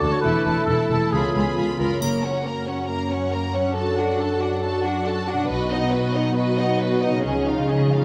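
A straight 4/4 pulse at 138 BPM drives this triumphant, adventurous cut from a heroic adventure film score, where a lush, vibrato-rich violin section carries the melody over a more distant second violin line, smooth violas, an even cello bass and woody double basses, with a brief solo oboe and mellow, roomy French horns giving way at 2.0 s to present, tight trombone chords, a triangle and dark cymbal swell in the background, ringing harp arpeggios throughout, and a round, soft-mallet timpani fill at 7.2 s, set in a wet scoring-stage reverb.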